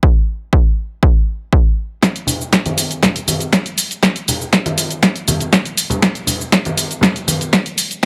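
This short house excerpt opens with an electronic kick drum alone, punchy and up front, with a tape-warm analog character and a high-pass filter shaping its low end. At 2.0 seconds a punchy analog drum machine joins with hi-hat, shaker and snare, its hats and percussion breathing with sidechain pumping. Tambourine and congas arrive at the same moment, bright and acoustic yet distant, set back in a large room behind a low-pass filter and their own sidechain pumping. From there the groove turns into a build-up, with a drum fill and a filter sweep on the drums running to the end. The mood is nostalgic and groovy, with a straight feel and light reverb over the whole.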